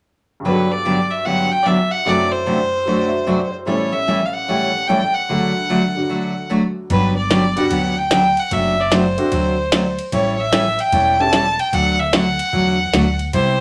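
A wet studio ambience with a short reverb tail surrounds this cheerful, swinging excerpt of country western swing in 4/4. A bowed fiddle carries the melody from the start, focused and boxy with a light vibrato, sitting up front beside a bright, full-bodied steel-string acoustic guitar played with a pick. Behind them, an intimate upright piano adds woody, short-sustained accompaniment with audible action noise until it stops at 11.3 seconds. At 6.9 seconds the second section begins, and a thumpy pizzicato upright bass enters along with an electronic, glitchy drum kit featuring a soft kick, tiny snare, clicky hi-hats, ride cymbal and a tape-warm character. The harmony moves through Gmaj7, D7/F#, A7 and D, cycling twice across the two sections.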